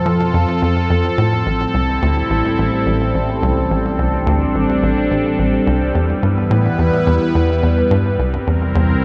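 Hypnotic and cosmic, this is a short excerpt of ambient, sequencer-driven space music in a straight 4/4. Up front, a phased analog pad holds sustained chords with a swirling, detuned sawtooth tone, its slow attack and long release shaped by phaser and chorus. Beneath it sits a mellow analog drone built from pulse-width-modulated sawtooth and pulse waves, kept in the background with chorus and tube saturation. From 0.1 seconds a tight sequencer bass drives a punchy, nasal riff, its sawtooth and square-wave filter pluck snapping in with a fast attack and decaying into delay. The harmony moves from F through Am7 and Em to C7 at 8.2 seconds. A wet spring reverb and an echo-heavy mix bathe the whole piece in a deep, spacious wash.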